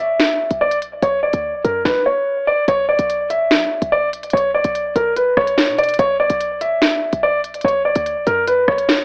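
A half-time drill groove at 145 BPM in 4/4 enters at 0.2 s on an electronic kit that sits up front, with a hard-clipped kick, sharp snare, crisp hi-hats and rim clicks, re-recorded in a large room, while a short, punchy 808-style bass with a tight sine body, a noise layer and a fast attack decays beneath it. Over a B minor chord in B harmonic minor, a warm concert grand piano plays an ominous melody between A#4 and E5 up front, its deep low end darkened by a low-pass filter and trailed by tape echo. This menacing hip hop excerpt has a dry, gritty cassette and AM-radio character with little reverb, and shifts into a new section at 2.7 s.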